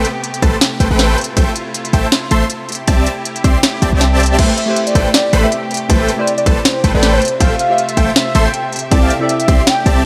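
A dense, compressed supersaw riff opens this lush, dreamy future bass excerpt at 159 BPM in A minor, its huge, detuned sawtooth body pumping against a boomy 808-style bass, crisp trap hats and a sharp snare, while a distant bowed string section holds sustained chords with a vintage 12-bit grit. A hard-clipped electronic kick arrives at 0.4 seconds, driving a half-time, lightly swung groove over a cycle of Am9, Fmaj7/A and C6. At 4.4 seconds a velvety synth lead carries the melody with chorus and digital delay, joined in the background by glassy digital keys coloured by phaser, all set in light digital ambience.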